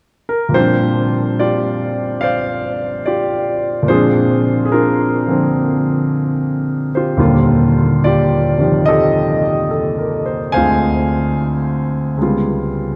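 Jazz with a romantic, late-night mood and a slow swing, played by a solo concert grand piano that enters at 0.3 s with a natural, up-front tone and deep bass, moving through lush extended chords such as Bb69, Ebmaj9#11 and Db7#11 while a long cathedral reverb surrounds it, in a short passage cut from a longer piece.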